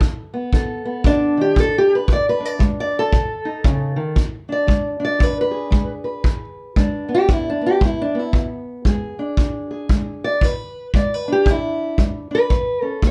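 A dark, lightly reverberant recording frames this soulful, swaggering acoustic country blues excerpt, where an up-front, fingerpicked parlour steel-string guitar with a woody, boxy tone and old strings carries the swung melody for the full 13.1 seconds over B7 and E7 changes that reach A at 12.5 seconds, beside a punchy, roomy kick drum played with brushes and a rolled-off top.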